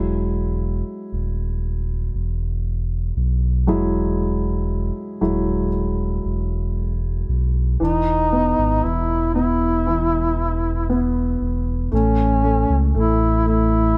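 Set in a small room, this hopeful, heartfelt pop excerpt in E major at a slow 58 BPM opens with a warm concert grand piano voicing Eadd9 over a deep, full sine sub bass, until a mellow, distant duduk enters at 7.8 seconds with folk-style vibrato and scooped notes as the harmony moves to Emaj7(no3) and then A at 11.9 seconds.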